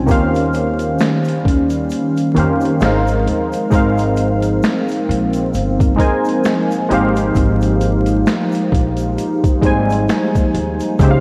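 A dreamy mix soaked in a lush hall reverb and dusted with vinyl crackle opens this short cut from a longer lo-fi hip hop piece, dreamy and nostalgic at a slow 66 BPM in Ab major with a swung 16th-note feel. Up front, round, detuned analog keys with a fast attack and decaying tones carry the accompaniment through chorus, phaser and a filter sweep, moving from Eb13 to Ab69 and then Fm7/Ab. Behind them, a deep, moody analog pad holds sustained chords with a slow attack and long release, its sub octave adding weight under the same chorus and phaser. A woody pizzicato upright bass on gut strings anchors the low end, while a compressed, pitched-down boom bap sampler kit of finger snaps, hi-hat, thumpy kick and high-tuned snare sits forward with gritty overdrive. The kick drops out from 1.9 to 3.7 seconds before returning, and a grainy egg shaker sits very quietly beneath it all.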